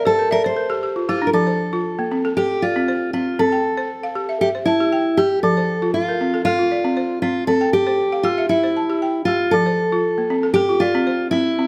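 Warm and joyful, this short cut from a longer West African traditional piece pairs a full-bodied, fingerpicked steel-string acoustic guitar carrying the melody with a woody, buzzing balafon struck with rubber mallets in arpeggios, both up front in close, detailed sound with a moderate recital-hall reverb, opening with a brief guitar solo and balafon fill before settling into an alternation of C and F chords from 1.3 seconds.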